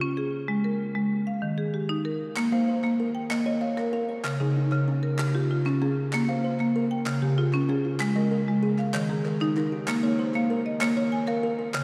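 A cavernous church acoustic with a long reverb tail surrounds this hypnotic, trance-like excerpt of Southern African traditional music, an mbira-style interlocking cycle in 12/8 at 128 BPM in Bb dorian. A bright, woody marimba struck with hard mallets sits up front from the start, spinning arpeggios over chords such as Bbm, Db and Eb. Crisp group handclaps join low in the mix at 2.4 seconds, and a mellow, boxy kalimba plucked with the fingertips adds its own arpeggios from 2.5 seconds.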